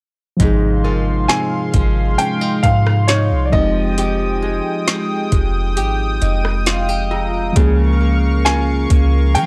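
A slow, straight 4/4 groove at 67 BPM, carried by a smooth, electronic R&B drum kit with soft kick, woody snare, rim click and metallic hats, sets a sensual, late-night mood in this contemporary R&B piece. A deep, round 808-style bass sits up front, while muted, felt-like synth keys with chorus supply dark, intimate accompaniment and add a fill from 5.8 to 7.6 seconds. A fingerpicked nylon-string guitar plays bright arpeggios through tape echo, alongside a shimmering, detuned pulse-width pad that holds sustained chords from 0.6 seconds. A warm baby grand piano carries the melody from 1.3 seconds, and a faint, inharmonic FM chime rings in the background with ensemble chorus, phaser and tape echo. The harmony moves from Ab6 to Fm9 to Db6, and the dry, gritty cassette sound gives this fragment of a longer piece a retro, close-up feel.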